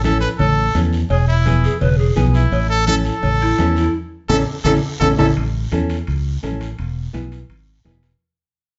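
Joyful, sunny cumbia at 169 BPM in A major, where a bright solo trumpet carries the melody over fingerpicked nylon-string guitar with audible finger squeak, a round, dark fingered electric bass up front, thick-skinned congas, ringing cowbell and timbales, and a raspy, close guiro, while breathy cane pan pipes with a soft chiff join as a second line at 1.6 seconds, a band accent and drum fill drive toward 5.4 seconds, and the excerpt fades out from there in a moderate studio reverb heard from further back in the room.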